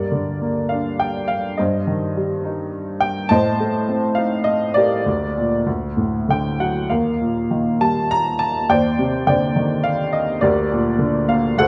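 Set in a moderate recital-hall reverb, a worn, woody, slightly detuned upright piano sits up front with long sustain, playing a bittersweet, cool classical solo in G minor at 103 BPM in a rubato 3/4, its lyrical line spanning D2 to Bb5 as the harmony moves from Gm through Cm/G, Adim and D to Ebadd9 before settling on Gm/D in this short cut from a longer piece.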